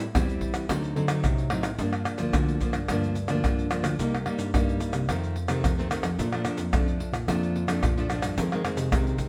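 Samba and choro in a lively, bittersweet mood, this short excerpt cut from a longer piece moves in a straight 4/4 feel. A full-bodied, fingerpicked nylon-string guitar carries the accompaniment up front, its fresh strings giving a classical tone with audible finger squeak. Underneath, a tine electric piano takes the bass role, sounding worn and slightly out of tune, lightly overdriven through a combo amp. Maracas, surdo, pandeiro and tamborim enter at 0.1 seconds, close and dry, with a tight surdo and hard hands on the drums placed forward in the mix. The harmony opens on Am7 and D7b9 before settling at 1.8 seconds into a passage that moves through Gm7, Cm7, F7 and Bbmaj7, closing on Fm7. A moderate studio reverb places the whole from further back in the room.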